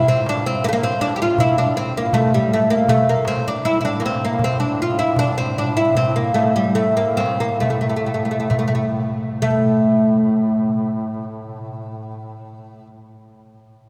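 Arabic maqam ensemble music with a longing, melancholic mood, taken from a longer piece, with a fretless oud leading the melody up front in a woody, deep voice of plectrum-plucked double strings. A duduk holds a low drone in the background with vibrato and a smooth top, while a crisp metal-shell darbuka, played with hard hands, sits distant from 0.3 to 9.9 seconds. The pace slows between 2.9 and 9.4 seconds, a new section begins at 9.4 seconds, and a cathedral reverb with a long 6.2-second decay bathes the ensemble in the resonance of a church or concert hall.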